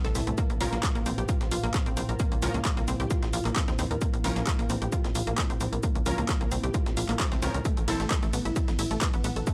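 Driving peak-time techno with a dark, hypnotic mood, this excerpt from a longer piece runs in a straight 4/4 feel. A tight, punchy, nasal sequencer bass with tube saturation and sidechain pumping plays from the start, and an overdriven electronic kick sits up front from 0.4 seconds. A layered techno drum kit of handclaps, hi-hat and ride cymbal carries overdrive, with pumping on its hats and cymbals, while a very quiet, gritty sampler-style breakbeat kit adds hi-hat, shaker and a medium-tuned snare underneath. A squelchy, detuned blip pluck plays the riff through chorus and tape echo, and an aggressive, bright rave stab in the background enters at 0.6 seconds and stops at 8.0 seconds, while the harmony moves from Bb minor to A minor at 7.7 seconds. An eerie, metallic FM drone with a slow attack hovers very quietly beneath, and a brief electronic swell appears at 7.0 seconds in a dry, gritty hardware recording touched by light digital ambience.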